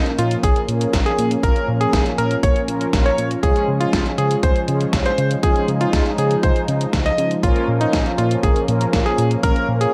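Bathed in light digital ambience, this bittersweet, danceable italo disco excerpt in Bb minor moves at 120 BPM over Bbm and Db chords, with a clear, up-front electric grand piano carrying the melody through digital delay and shimmer reverb, a smooth, detuned analog pad sustaining chords, mellow chorused synth brass stabs sitting in the background, a glossy, nasal synth bass, and a sampler-style drum machine whose hi-hat and gated-reverb snare are joined at 0.4 s by a punchy, tape-warm electronic kick re-recorded in a large room.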